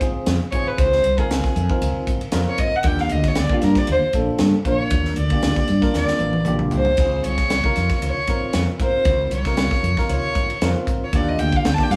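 A straight 4/4 groove from a crisp fusion drum kit, with its high-tuned snare and tight kick, drives this slick, bright electric jazz fusion excerpt, played by a live band in a small room with moderate reverb. A round, dark fretless bass and a clean, bell-like tine electric piano move between Dbmaj9 and Ebmaj9 chords, while a rich violin, bowed sul tasto with a soft attack, enters at 0.5 s and carries a floating, pure solo up front. The airy, polished drums break into a fill at 6.0 s.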